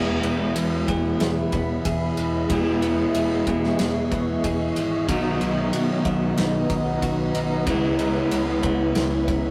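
A rough rehearsal-room recording, soaked in wet small-room ambience, carries this wistful, dreamy shoegaze and dream-pop rock fragment at 93 BPM in E lydian: an up-front, warm overdriven semi-hollow guitar riff leads over a background clean electric guitar riff, bright, compressed direct-recorded clean guitar arpeggios, a growling overdriven picked bass and a loose indie kit with punchy kick, ride and medium-tuned snare pumping in the room, while from 1.1 s a cloudy, detuned granular pad with its own reverb blurs sustained chords moving through Emaj7, Bmaj7 and C#m7.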